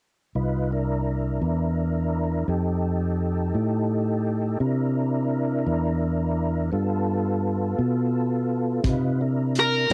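A 12/8 slow blues at 57 BPM in C mixolydian, this gritty, swaggering cassette home recording opens with a lightly overdriven tonewheel organ holding sustained chords through a slow rotary speaker and chorus vibrato, with audible key click, over a round, up-front fingered electric bass moving through C7, F7 and G7. A tight-kicked soul drum kit with hi-hat enters at 8.8 seconds, and a biting, overdriven lead guitar with tape echo begins its solo on a single Bb4 at 9.6 seconds.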